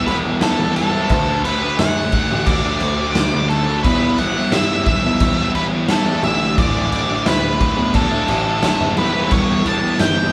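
A band playing live in one large studio room, with a moderate reverb, gives this brief passage from a longer alternative rock piece a full, roomy sound. Over a straight 4/4 pulse, the mood is brooding and cathartic, moving through Em, D, Asus4 and back to Em. Up front, a double-tracked, thick fuzz guitar picks a dark riff, while an octave-fuzz lead guitar carries the distorted melody high above it. A baby grand piano takes the bass role in its lowest register, entering at 0.1 seconds with a dark, mellow tone and long sustain. The raw garage drum kit is also prominent, with a punchy kick, a medium-tuned snare and crash cymbal, its saturated, rolled-off top giving it a smooth, stony weight.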